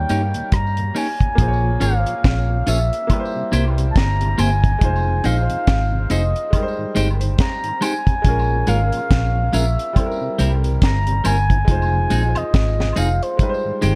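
A deep, dry reggae drum kit and a round, foam-muted fingered electric bass sit up front in a relaxed 4/4 at 70 BPM, swung on the sixteenths, with a high-tuned snare, a tight kick, rim clicks and hi-hat giving this lovers rock passage its unhurried pulse. In F minor, the mood is smooth and longing as the harmony moves through Bbm7, C7, Fm7 and Abmaj7. Over this, a reedy, woody FM lead carries the melody with a soft attack, sustained notes and vibrato, thickened by chorus and trailed by tape echo. A boxy baby grand piano with its own tape echo and twangy, scooped, compressed picked guitar stabs fill the middle, while a mellow tonewheel organ turns very quietly through a rotary speaker underneath. Tambourine and woodblock add faint, echoing accents in the background of a dark, small-room production that runs from 0.0 to 14.0 seconds, cut from a longer piece.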